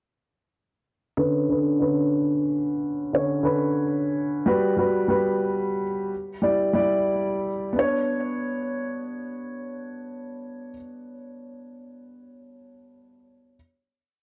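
A dark concert grand piano carries this whole short piece alone, entering at 1.2 seconds with open-voiced rhythmic chords that repeat like a sampled loop. The feel is ominous and tense, drill-style hip hop in a half-time pulse. The piano sits up front with a mellow, boxy tone, deep bass and audible action noise that makes it feel intimate. A low-pass filter shapes it throughout, and a filter sweep runs across the opening breakdown as the harmony moves from Bmadd9 through Gmaj7 and Em7. At 7.8 seconds it returns to Bmadd9 for a final chord section that lasts until 11.0 seconds, with the piano sounding until 13.6 seconds. The sound is dry and gritty, with a light studio reverb and the dulled, hazy top end of cassette tape.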